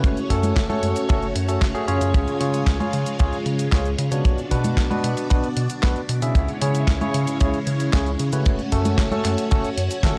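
Bittersweet and melodramatic, this italo disco excerpt sets lush, phased string-machine chords with 12-bit grit over a round, dark analog bass, bright barky tine electric piano stabs through analog delay, a clean sampler-style drum machine with cabasa, congas, handclaps and toms, and a tight acoustic kick, all captured as a dry, gritty hardware recording with cassette tape saturation.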